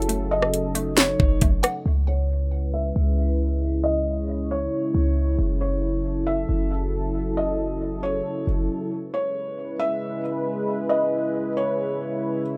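A half-time 4/4 pulse at 136 BPM opens this hazy, spacious cloud-rap excerpt in C# minor, where a trap kit with knocking kick, sharp snare and metallic hats and a hollow, bouncy square pluck arpeggio both drop out by 1.9 seconds, leaving a boomy sine 808 bass, a moody detuned sawtooth pad with chorus, sidechain pumping and plate reverb, and a soft felt-muted upright piano melody with audible action noise and tape echo drifting over F#m, C#m7 and F#m7 through a filter sweep in a rough home demo mix.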